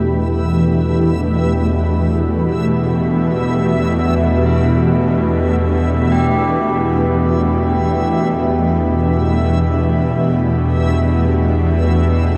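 A tense, nasal, string-like drone and a cloudy, blurred granular pad holding sustained chords sit up front from the first moment, while tubular bells fade in with solemn, metallic arpeggios trailed by diffuse ambient delay and shimmer reverb. A reversed, swelling texture fades in higher up, dreamy and granular, with its own shimmer reverb. This ominous, desolate dark ambient drone, cut from a longer piece, is steeped in a cavernous cathedral reverb and a dark production.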